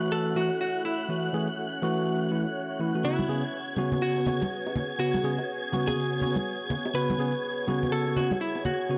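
Deep house with a smooth, late-night mood and a swung groove, this short cut from a longer piece moves from F#m7 to C#7sus4 as a dark, compressed hollow-body jazz guitar plays the melody through analog delay, while an up-front tine electric piano adds clean stabs echoed by its own analog delay. Two silky, vintage string machines sit underneath, one holding slow-attack chords through phaser and ensemble chorus and the other adding a high, long-release texture, as a warbling, lo-fi tape-like pad with detuned, nostalgic tones drifts in the background through chorus and its built-in reverb. Bright, close congas and bongos enter at 3.2 seconds, and the whole recording has a gritty hardware character set in a moderate plate reverb.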